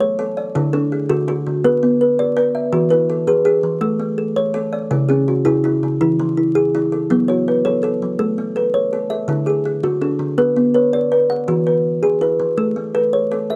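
A dry, close-miked kalimba with a short, woody thumb pluck opens this rippling, hypnotic fragment of southern African traditional music, playing arpeggios in an mbira-style interlocking cycle at 110 BPM in 12/8 in A major, while a second kalimba joins at 0.2 s with a ringing, airy, hollow-box tone, both sitting up front in a dark production with moderate booth ambience and vinyl crackle.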